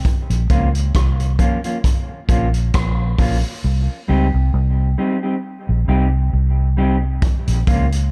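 A round, foam-muted electric bass sits up front, holding low between Bb1 and Db2 in this hypnotic, heavy dub reggae excerpt at 67 BPM in Bb dorian, with a lightly swung 16th feel. A vintage acoustic kit with a punchy kick, hi-hat, rim click and rolled-off top plays alongside, while a clean, fingered electric guitar sits further back, treated with dub echo. The harmony moves from Bbm to Cm at 3.6 seconds and back to Bbm at 7.2, while one part falls silent over that same span, all wrapped in a dark, warm production with light studio reverb.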